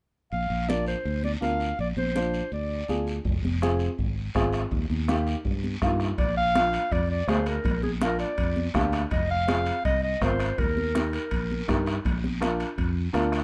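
A soft-attack, mellow clarinet carries the melody up front over a warm, direct fingered electric bass, bright, damped congas and a raspy, band-limited guiro in this driving, danceable cumbia fragment at 164 BPM in straight 4/4, with a dark, woody upright piano accompanying from 0.7 seconds, a soft-beater bombo joining at 3.3 seconds from a distant large room, and ringing metal-shell timbales sitting in the background from 6.2 seconds as the chords move through Bb, Fm and Eb under light reverb.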